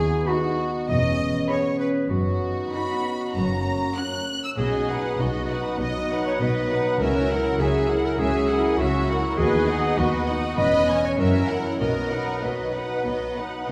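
In a straight 4/4 at 99 BPM, this playful, whimsical film cue in B major unfolds with a magical air, cut from a longer piece and bathed in a wet recital-hall reverb. A clear, close-miked solo clarinet shares the second line with a rich violin section, while distant French horns hold sustained chords, a ringing concert harp plays arpeggios in the background, and lush cellos and a smooth double bass section with vibrato carry the bass. From 0.3 s a focused, bowed violin section sings the high melody over an even viola accompaniment, the harmony moving from B/D# through C#m7/E and F#7 to B.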